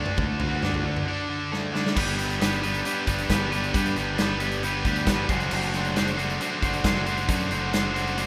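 This short clip from a longer piece has the rough feel of a home demo, with light reverb. It's a carefree, jangly slice of indie rock in a straight four. A cranked, overdriven electric guitar plays the riff, picked and double-tracked and sitting up front with a bright edge. Beneath it, a growling fingered electric bass, direct and amped with its own overdrive, adds a punchy low end. A big acoustic rock kit with a natural big-room sound comes in at 0.1 seconds, with bright cymbals, a medium-tuned snare and a punchy kick. After an opening on D, a drum fill at 1.5 seconds leads into a new section on G at 2.0 seconds, which moves to D7/F# at 5.3 seconds.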